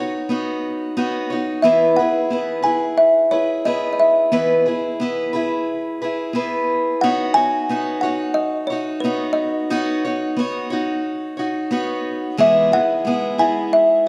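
A boxy, parlour-sized steel-string acoustic guitar opens this pastoral acoustic folk passage, picking out accompaniment on a Badd9 chord alone for the first moments. At 1.6 seconds a kalimba enters with the melody, its woody, mellow fingertip plucks sounding soft and short with a mid-forward tone, slightly louder than the guitar. The peaceful mood unfolds at an easy 89 BPM in a straight 4/4, in E major with tuning set to A4 = 439 Hz. The harmony rocks gently between E and Badd9, with the guitar ranging from low E2 up to C#5 while the kalimba stays in a narrow band from B4 to G#5. A moderate concert hall reverb gives the pair an airy sense of space, and this section is cut from a longer piece.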